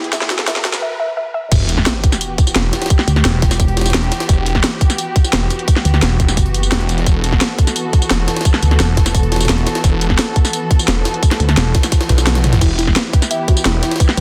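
Dark technical drum and bass at 173 BPM in E minor, this futuristic excerpt opens with a short build-up of muted, veiled con sordino strings, a soft round pluck with chorus and tape echo, a riser and sub drop, a cracking layered kit, and a gritty pitched-up sampler-style kit set back in a large room. The drop hits at 1.5 seconds with a tight, up-front electronic kick and a swirling phased detuned saw bass, joined by a heavy pulsing pluck wobble bass from 3.1 seconds, all in a dense, heavily limited modern master.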